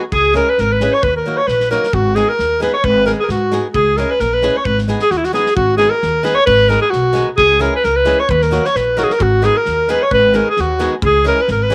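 A swung 2/4 pulse at 132 BPM drives this wild, virtuosic Balkan wedding-band excerpt in G# minor, where a vibrato-rich alto saxophone with a smooth top leads up front in classical style, a clear, close-miked clarinet traces a second line in the background, a bright fingerpicked flamenco guitar on fresh strings accompanies, a woody, thumpy pizzicato upright bass holds the low end, and a loose indie kit of punchy kick and medium-tuned snare sits in a small room with light reverb.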